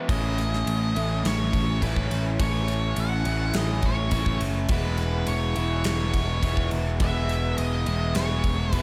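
Light reverb and studio ambience frame this short cut from a longer shoegaze and dream pop rock piece, whose mood is blissful and wistful in a straight 4/4. A crunchy, double-tracked overdriven guitar sits up front from the first moment, its picked riff softened by a lush chorus. Just after, a dark octave-fuzz lead guitar carries the melody high above, its distortion trailed by a digital delay. A modern electric bass, growly and direct, holds the low end, while a gated 80s kit of punchy kick, medium-tuned snare and bright ride cymbal rings through an airy stone room with a polished finish. The harmony rests on A before moving to E6 at 4.7 seconds, and all four parts play together to the close at 8.8 seconds.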